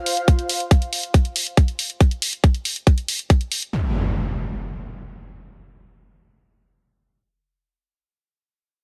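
In a digital ambience, this intense, psychedelic trance passage opens with a produced electronic hi-hat joined moments later by a tight, layered electronic kick drum up front in straight 4/4; the kick drops away at 3.4 seconds and the hi-hat at 3.7 seconds, as an up-front electronic impact takes over until 7.7 seconds.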